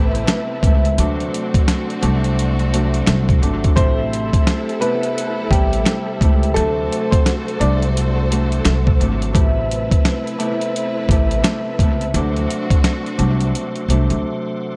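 Reflective and dark, this boom-bap hip-hop excerpt moves at 86 BPM with a swung 16th-note feel, built on a gritty, tape-warm sampler-style kit with a thumpy kick and fat snare, alongside a woody pizzicato upright bass and a ringing fingerpicked Celtic harp, all three up front. Bowed string stabs with vibrato and portamento pass through analog delay, a reedy tonewheel organ holds lightly overdriven chords through a fast rotary speaker in the background, and very quiet, dry finger snaps sit close. A clear, slightly detuned upright piano carries the melody with audible action noise from 3.8 to 7.8 seconds over Amadd9 and D7 chords in an echo-heavy small room, before a brief break at 14.2 seconds.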